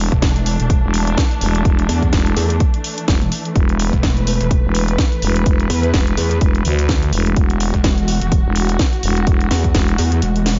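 A muted string section and a growling FM bass open this aggressive, swaggering bass house excerpt together, the bowed ensemble holding dark, veiled sustained chords with vibrato beneath a thick, up-front bass line. A moment later a second bass joins, a heavy pulsing pluck wobble that is distorted, overdriven and compressed, with chorus and a mellow, sine-based weight. A punchy, layered electronic kick and a house drum kit with a cracking snare and warm hats drive the shuffling groove. The strings and both basses pump against the beat under sidechain compression, and the whole mix sits dry and dark, with its top end rolled off. The kick stops at 9.9 seconds, leaving the strings, the wobble bass and the kit to carry the final moments.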